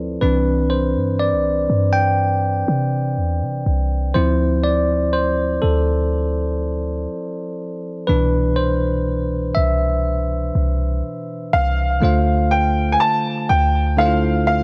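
Contemporary R&B with a moody, sensual feel, this excerpt from a longer piece pairs a bell-like, up-front tine electric piano, playing over C, Dm7 and Cmaj7 chords, with a deep, boomy 808-style bass, before a brilliant baby grand piano enters at 11.5 seconds with a high melody as the music moves back to Dm7 at 12.0 seconds, all bathed in light reverb and the worn, warbling pitch drift of old cassette tape.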